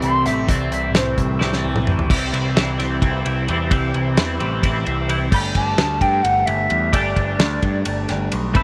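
Dark and trippy, this psychedelic rock excerpt moves in 7/8 at 261 BPM counted in eighths, with straight feel and tuning set to A4 = 438 Hz. A mellow, hollow silver concert flute carries the melody through tape echo, its pure tone, crisp attack and vibrato sitting at a distance as it opens with a brief solo. Up front, a bright, twangy twelve-string electric guitar picks a compressed, clean riff through a rotary speaker, joined by a growling picked bass with overdrive and a damped 70s drum kit with a fat snare and tight kick that adds a fill from 1.4 seconds. Buzzy vintage combo organ holds overdriven chords with heavy vibrato in the background until 5.3 seconds, while a softly plucked tanpura supplies a shimmering, buzzing drone throughout. The harmony shifts from C to Gsus2 at 5.3 seconds as the flute returns, all in a small room with light reverb.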